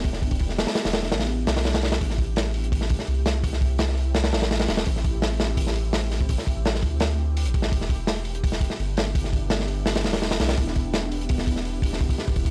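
A crunchy breakbeat drum kit drives this dark, nostalgic drum and bass and jungle excerpt at 168 BPM in a straight 4/4, its hi-hat, tight kick and medium-tuned snare sitting up front with a gritty, saturated, mid-forward character and a rolled-off top. Beneath it, a soft dub sub bass holds the low end from E1 to D2, deep and round with a fast attack and sustained notes. Further back, an ethereal pad sustains airy, detuned chords between A3 and G4, its slow attack and long release softened by ensemble chorus, built-in reverb and a phaser. The harmony in A minor moves from Em7 to Am7 at 2.0 seconds and returns to Em7 at 7.7 seconds, with all three parts playing throughout the 12.5 seconds. The whole mix carries a dry, gritty hardware sound with transformer saturation and a touch of studio reverb.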